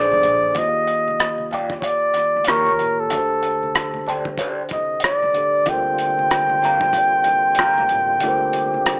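A swung 4/4 groove from a muffled, cloth-damped drum kit with tight kick, hi-hat and rim click anchors this late-night, soulful neo-soul R&B fragment, where a breathy flugelhorn with scooped notes and slapback echo sings the melody up front over mellow tine electric piano, a woody upright bass, very quiet bright congas, a slightly broken-up electric guitar with wah playing a second line from 1.5 to 7.8 seconds, and a fat, lightly overdriven tonewheel organ with slow rotary speaker that drops out after 0.6 seconds and returns at 5.7 seconds, all coloured by worn, warbling cassette tape and a small-speaker sound.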